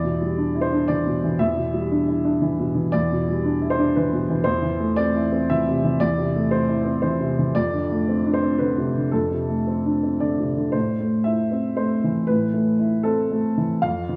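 A solo upright piano opens this short, melancholic passage of neoclassical minimalist music, its woody, natural tone sitting up front in a light reverb. The piece moves in 3/4 at around 117 BPM, but the rubato feel lets the time breathe in a reflective way. Set in A minor, the harmony passes from Em7 to Am/E at 4.5 seconds and on to Dm7/F before settling on Am at 10.7 seconds, where a new section begins. The piano covers a span from E2 up to F5. The passage is cut from a longer piece and ends at 14.2 seconds.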